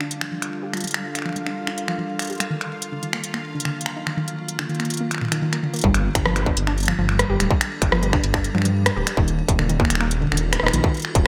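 Bright, 1980s-style digital production with light reverb frames this glitchy, intricate IDM excerpt in a straight 4/4. An icy, crystalline glass pad holds Gm7 and Ebmadd9 chords through chorus and reverb, while a warbly, lo-fi pluck runs arpeggios through chorus and digital delay, both under a filter sweep until 5.8 seconds. Alongside them play an up-front industrial kit of finger snaps, smooth hi-hat and rim clicks in gated reverb, and a bubbling, resonant stepped-filter texture that stops at 5.8 seconds, when a deep, rumbling detuned saw bass and a distorted electronic kick arrive.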